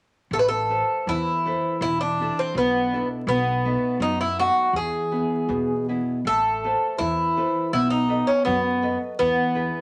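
At 0.3 seconds, a longing, passionate fado-style ballad opens with three parts entering together: a bright, metallic Irish bouzouki carrying the melody up front, a full-bodied nylon-string guitar fingerpicking a deep classical accompaniment, and a woody, growly pizzicato upright bass underneath. The piece sits in A harmonic minor at 81 BPM in 2/4, though its rubato feel lets the pulse breathe freely. The bouzouki's picked double strings ring with a metallic shimmer in the middle register, while the guitar spreads across a broader range that reaches both below and above it. The harmony moves from Amadd9 through E7sus4 and B7 to E, then circles back through Amadd9 and B7 to land on E again. A moderate studio reverb and a layer of vinyl crackle give the recording an aged, intimate character, and this short passage, cut from a longer piece, ends at 9.8 seconds.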